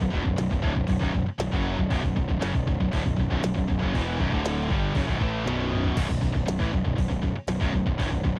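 Heavy metal at 118 BPM in B minor, dark and epic, this short cut from a longer piece sits on a B minor chord as three picked electric guitars (a crunchy, double-tracked overdriven one, a high-gain distorted one and a tight, bright distorted one) churn out riffs in the background. Up front, a growly fuzz bass with overdrive and a glitchy electronic drum kit with a deep kick, tiny snare, crash and toms drive the straight 4/4 feel. A drum fill at 5.5 seconds leads into a new section at 6.0 seconds, where the crunchy guitar stops, all captured in a dry, close 1970s-style studio sound.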